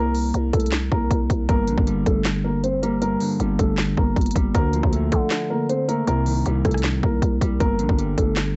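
A half-time trap groove at 157 BPM in 4/4 anchors this eerie, menacing hip hop fragment in G minor, cut from a longer piece. The electronic drum kit sits up front with a hard-clipped kick, sharp snare, crisp hi-hats, handclaps and rim clicks, while a growling, buzzy 808-style bass with a fast attack and decaying sine body rumbles from G1 to D3. A dark, boxy concert grand piano carries the melody between A3 and C5, its deep low end trailed by tape echo. At 1.5 seconds a clean, fingered electric guitar joins as accompaniment in a low register, moving through G minor, D minor and C minor after an opening Bbsus2 over C. The sound is dry and gritty, with the hazy, band-limited character of cassette tape and very little reverb.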